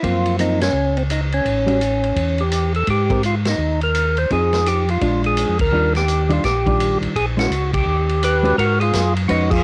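A soulful, bluesy soul jazz organ trio swings at 168 BPM in Eb major, with all four parts sounding together from the first second of this short cut from a longer piece. A percussive tonewheel organ carries the melody between C4 and C5, its fat, lightly overdriven tone marked by third-harmonic percussion, vibrato and a slow rotary speaker, sitting up front with a cassette-tape grain. Beneath it, a second, mellow tonewheel organ plays the bass from A1 to Ab2, round and dark with audible key click and its own slow rotary swirl. A dark, clean hollow-body jazz guitar, fingered and compressed, fills in the accompaniment, while a vintage acoustic drum kit with dark cymbals, a medium-tuned snare and a tight kick sits mid-forward with a rolled-off top. The harmony moves through rich colours such as Gbmaj7#11, Ebmaj9 and Eb7alt, the band hits accents together at moments like 0.6 and 5.5 seconds, and a new section arrives on Abm7 at 8.6 seconds. 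A small room reverb and the cassette character give the whole performance the intimate feel of a home recording.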